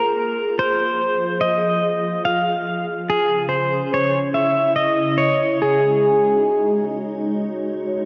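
A soft, organ-like pad fades in under a twangy, clean pedal steel guitar in this melancholic, serene ambient fragment at 72 BPM in 3/4, the pad's detuned, mellow sustained chords thickened by ensemble chorus. Played with fingerpicks, slide and volume swells, the compressed steel melody floats through a diffuse delay before dropping out at 6.8 seconds while the pad carries on. A lush hall reverb and the warbly pitch drift of worn cassette tape wrap the whole fragment in a hazy, faded glow.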